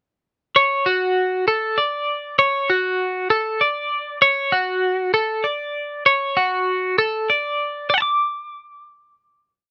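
Playful and wistful, this short rock piece in 6/8 at 65 BPM features a solo twelve-string electric guitar, bright, twangy and compressed with tremolo, picking a clean ostinato up front in light reverb on a rough home demo mix before landing on a final chord from 7.9 to 9.7 seconds.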